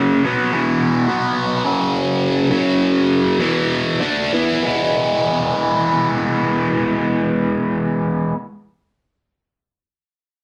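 Trippy and hypnotic, this free-time rock fragment in E mixolydian, cut from a longer piece and tuned to A4 = 439 Hz, features a lone bright, overdriven, picked electric guitar, double-tracked and up front with phaser and slapback echo, playing from 0.0 to 8.4 seconds across E2 to E4 through E5, B5, F#5 and back to E5 while slowing from 0.5 to 4.6 seconds, then settling on E as a second passage begins, all set in a wet studio reverb with a rough rehearsal-room sound.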